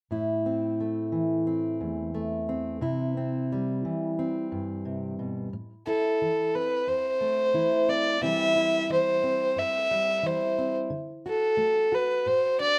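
A fingerpicked, plugged-in steel-string acoustic guitar opens this haunting, melancholic folk excerpt at 89 BPM in A dorian, its full-bodied jumbo tone sitting up front with audible finger squeak over Am and C, before a dark, woody fiddle enters at 5.9 seconds for a bowed solo with light vibrato and a boxy edge as the chords move through Am, C and D, all under light reverb in an open outdoor setting.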